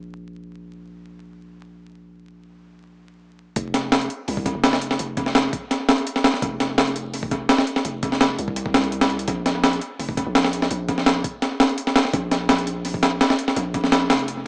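A gritty, compressed breakbeat drum kit with a thumpy kick, high-tuned snare and analog delay drops in up front at 3.6 seconds over a deep, mellow sine 808-style bass that holds long decaying notes throughout this raw, dark 168 BPM drum and bass and jungle excerpt, set in an echo-heavy mix with plate reverb, vinyl crackle and a small-speaker sound.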